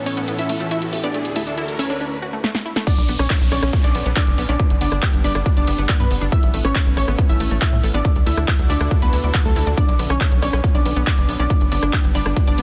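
Uplifting trance with a soaring, bittersweet mood, where a detuned supersaw pad, a lush unison pluck melody and a warbling background pluck arpeggio, all pumping with sidechain and the plucks trailing tape echo, build over a riser and a dry analog drum machine until the drop at 2.9 s brings in a punchy layered kick, a tight, nasal sequencer bass and a dark, gritty baby grand piano line.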